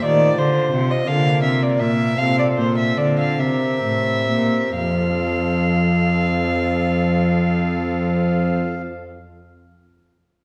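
A solo violin leads this baroque-style sonata movement, its dark, nasal gut-string tone carrying a light vibrato and an airy bow in close, up-front period style. Beneath it, a single bowed cello supplies the bass line with a reedy, smooth-topped sound, while a pipe organ on foundation stops fills out the continuo with thick, romantically voiced chords. The music moves in a flowing, dance-like lilt in compound time, and the pace slackens over the opening 4.8 seconds as the harmony passes from F7 through Bb and back before settling on F after a C7. The strings both stop at 8.5 seconds, leaving the organ to sound alone briefly until 8.8 seconds. A wet recital hall reverb surrounds the trio, lending the cut-off passage from a longer piece a resonant, spacious bloom.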